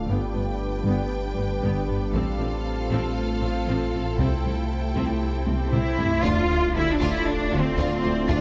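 A cinematic, hybrid orchestral and electronic film-score excerpt with a relentless, vast mood, built on lush bowed strings: a violin section carrying a second line over background violas, with cellos, double basses and a deep sub bass with octave anchoring the low end beneath dark French horns and a glassy, ethereal FM pad holding sustained chords. A background taiko ensemble struck with hard sticks enters at 2.1 s, and an electronic swell and sub drop rises from 5.2 s as a filter sweep runs toward an impact. At 6.2 s the harmony settles on D minor as a very quiet violin melody, a distant, roomy trombone section and a solo tuba join, all within a moderate scoring-stage reverb.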